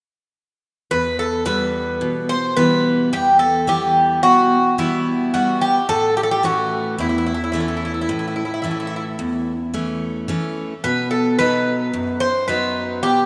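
Set in a straight 9/8 at 109 BPM, this short cut from a longer Greek folk piece in E harmonic minor carries a dark, melancholic mood, moving from Em to A and then B. A Greek bouzouki plays the melody up front with a bright, metallic ring from its doubled strings, some octave-doubled, while a picked jumbo steel-string acoustic guitar, full-bodied and also up front, supplies the accompaniment from 0.9 to 13.3 seconds. Both sit in a lush hall reverb with a long tail, in a rough home demo mix.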